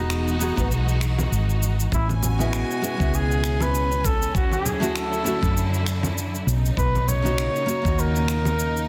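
A distant, roomy flugelhorn carries the melody from 1.9 s with digital delay, floating over this blissful, smooth sunset chillout excerpt in A lydian at 99 BPM with a swung sixteenth feel. A fingerpicked, full-bodied nylon-string guitar with its own delay provides accompaniment while a lush, bowed symphonic string section holds sustained chords through Emaj9, Amaj9, Dmaj9 and Bmaj9, and a dark, round hollow-body electric bass sits up front. Layered electronic finger snaps and shaker with soft clipping on the snare start at 0.1 s, a gritty, thumpy electronic kick enters at 0.6 s, and low-tuned vintage congas join at 1.2 s in the background, all set in light small-room reverb and a dense, heavily limited modern master.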